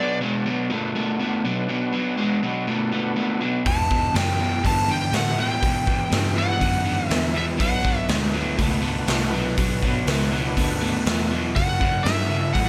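Smoky and brooding, this blues rock power trio and southern rock excerpt moves at 122 BPM in B minor, with a crunchy, double-tracked overdriven guitar riff up front and a thick, gritty tonewheel organ holding sustained chords in the background through a slow rotary speaker and chorus vibrato from the start. At 3.7 seconds a raw garage drum kit with a punchy kick and saturated, bright stone-room sound enters together with a dark, round, foam-muted picked bass, while an overdriven slide guitar played with fingerpicks carries the melody through analog delay. The chords move from Bm to Em and back, landing on F#7#9 at 11.6 seconds, all inside a moderate club reverb.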